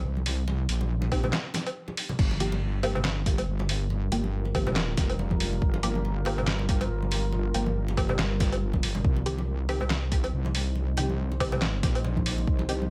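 A heavy, detuned sawtooth wobble bass sits up front from the start of this heavy, cavernous deep dubstep excerpt in G minor, moving at 140 BPM with a swung, half-time feel over a short break at 1.3 seconds before settling into Gm7 and then Cm. Around it, a gritty, pitched-down trip hop sampler-style kit of snare, hi-hat, handclaps, woodblock and crash joins a layered electronic kick, while bright conga hits with dub echo sit in the background and a muted, full-bodied filtered chord stab adds phaser and 12-bit sampler grit. From 3.8 seconds a moody ambient pad with a sub octave, slow attack and reverb spreads through the mix, deepening the dark, spacious atmosphere.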